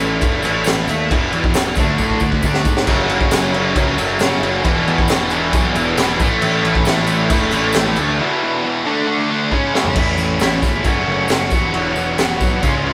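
A straight 4/4 groove at 136 BPM drives this gritty, brooding classic rock excerpt, with a raw garage drum kit up front, pumping in its small room with dark cymbals, a high-tuned snare, a punchy kick and a saturated tone overall, adding fills at 2.0 and 9.5 seconds while a jingly tambourine sits in the background. A bright, double-tracked distorted electric guitar riffs over power chords from A5 through E5, D5 and F#5, joined at 2.9 seconds by a cranked stack guitar with its own overdriven riff until 10.0 seconds, all anchored by a fuzz-laden picked electric bass. At 10.0 seconds the music shifts to chords of A, F#m and Esus2, the band sounding as if playing live together in one room with light reverb.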